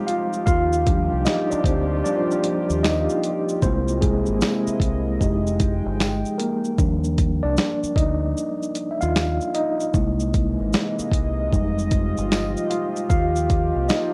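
Nostalgic and dreamy, this lo-fi hip hop cut in Eb major sits at 76 BPM with a 16th-note swing, its mellow tine electric piano taking the solo throughout, up front and clean, softened by a low-pass filter, cassette tape and plate reverb, over a warbling, detuned pad of slow-attack sustained chords with chorus. A dusty, sampler-style kit drives it with a thumpy kick, medium-tuned snare, hi-hat, shaker and finger snaps, gritty and compressed, while a deep, round fingered electric bass enters at 0.5 seconds and a very quiet, jingly tambourine joins at 1.3 seconds. The harmony cycles through Ebmaj9, C7alt and Fm9 before settling on Ebadd9, all captured as a home cassette recording with moderate studio reverb.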